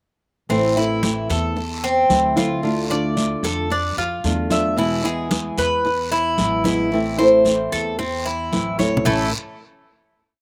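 Latin Cuban son and guajira, danceable and nostalgic, at 112 BPM in A harmonic minor: an up-front, metallic Cuban tres picks an arpeggiated guajeo with slapback echo over a fingerpicked flamenco guitar strumming with muted slaps and finger squeak, while a woody, thumpy pizzicato upright bass plays a tumbao that anticipates the chords, bright congas with slaps and open strokes sit in the background, and a raspy guiro scrapes along, all moving through Am, Dm and E before a fill at 8.8 seconds leads to a final A chord at 9.1 seconds in a dry outdoor sound.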